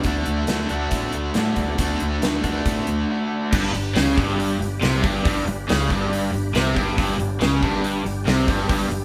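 A straight, driving 4/4 at 139 BPM opens this sunny classic rock excerpt in G major, with a gated 80s drum kit up front, its punchy kick, medium-tuned snare and bright cymbals ringing in a bright stone room. Two overdriven, picked guitars each play a riff from the start: a bright, cranked stack guitar up front with harmonic tremolo, and a lo-fi, raw garage guitar sitting in the background. A growling fingered electric bass, overdriven and bright with a direct-and-amped edge, joins at 0.1 s over a D chord. At 3.5 s the harmony moves to G and two new parts arrive. One is a dark, double-tracked, compressed electric guitar riff with phaser. The other is a very quiet tonewheel organ holding full, thick sustained chords, lightly overdriven, with chorus vibrato, key click and a slow rotary speaker. The band sounds like it is playing live in one room, wrapped in a short, wet studio reverb.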